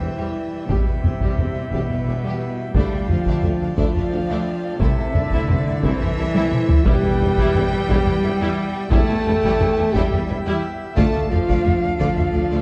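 Dramatic and epic, this cinematic orchestral film-score excerpt moves at a slow 58 BPM in 6/8 in E phrygian, with a lush, vibrato-rich symphonic violin section carrying the melody over a mellow, hollow silver flute and a smooth studio violin line, while a portamento-laced viola section, a rich cello section, woody double basses and a very quiet tuba fill out the lower strings and bass. Dark, distant French horns and tight trombones hold sustained chords alongside a brilliant, full plenum pipe organ with chiff sitting in the background, as the harmony moves from Em through Dmadd9 and Am/C back to Em and on to Dm. An up-front, close and dry taiko ensemble struck with heavy sticks enters at 0.7 seconds and plays a fill at 6.3 seconds, followed by a brief, articulate timpani hit at 6.9 seconds, all set in a dark production with moderate concert hall reverb.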